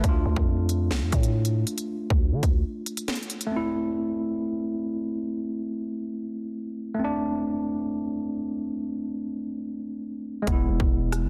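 A worn, slightly out-of-tune electric piano opens this cold, dark drill cut, playing together with a growling, buzzy 808-style bass and a tape-warm electronic drum kit in a half-time feel. The piano's tines sound lightly overdriven, as if coming through built-in speakers. The drums pair a hard-clipped kick with a sharp snare, rim clicks and crisp hi-hats. The bass drops out at 2.6 seconds for a short break, and the drums follow at 3.5 seconds, leaving the piano alone over a shift from D minor to A minor. Bass and drums return at 10.5 seconds as the harmony moves to E, just before this fragment of a longer track cuts off. Every part sits up front in a digital ambience, and the master is dense and heavily limited.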